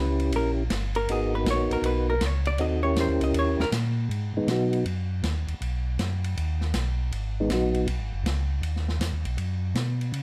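Bluesy and late-night in mood, this short excerpt from a longer soul jazz organ trio piece swings in 4/4 under a light reverb. A dark, compressed hollow-body electric guitar plays a clean, picked solo at the start and drops out at 3.7 seconds, while a percussive tonewheel organ carries the melody with a soft, flute-like tone, second harmonic percussion, chorus vibrato and a slow rotary speaker. From 4.1 seconds the organ takes the solo spotlight, with its melody returning briefly at 7.4 seconds. Underneath, a second tonewheel organ plays the bass line up front, round and mellow, with audible key click, vibrato and its own slow rotary speaker. A vintage acoustic drum kit, heard naturally in a small room, keeps time on hi-hat, ride cymbal and a medium-tuned snare as the harmony moves between a rootless D#7b9 and G#m7.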